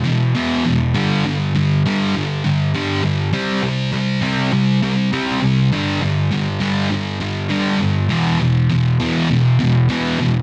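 A thick, bright fuzz guitar, double-tracked, picked and pushed up front, carries this bittersweet, anthemic rock excerpt alone in a half-time 4/4 feel, moving through E5, G5 and C5 power chords in a moderate studio reverb under a dense, heavily limited modern master.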